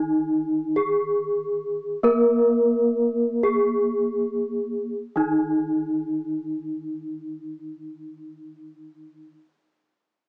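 Shimmering and ceremonial, this gamelan fragment moves at a slow 37-51 BPM in 4/4, easing its pace over the first 5.0 seconds before a new section begins. A close-miked bronze metallophone carries the melody up front with a plate reverb, its paired tuning producing beating shimmer as wooden mallets strike ringing metal. A second, quieter metallophone accompanies an octave lower, and both fall silent at 9.3 seconds in a modest small room heard through a small-speaker tone.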